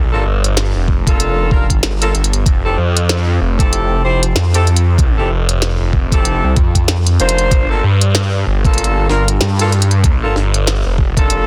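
A dense, heavily limited master with little reverb gives this playful, funky glitch hop excerpt a dry, close sound, with a swung sixteenth-note feel. A thick, detuned sawtooth bass opens at the start, swirling through a phaser and saturated by overdrive, sitting up front in the mix. A tight horn section with vibrato plays pop-style stabs from 0.1 seconds, pumping against the sidechain and trailing dub echo. A glitchy electronic kit of clicky hi-hats and a tiny, soft-clipped snare enters at 0.4 seconds with a small-room character, and a gritty, pitched-down, tape-colored kick adds a thumpy low end from 0.9 seconds. The harmony moves from Gm9 to Fmaj7 and back to Gm9.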